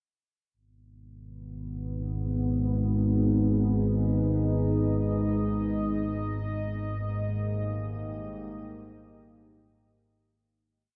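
Desolate and ominous, this short dark ambient drone in free time and G# harmonic minor sets a chorused, warbling analog drone beneath a deep, moody pad of slowly shifting sustained chords wreathed in shimmer reverb, moving from G#m to D#/G# at 5.5 s as the whole piece fades out through a vast, echoing space.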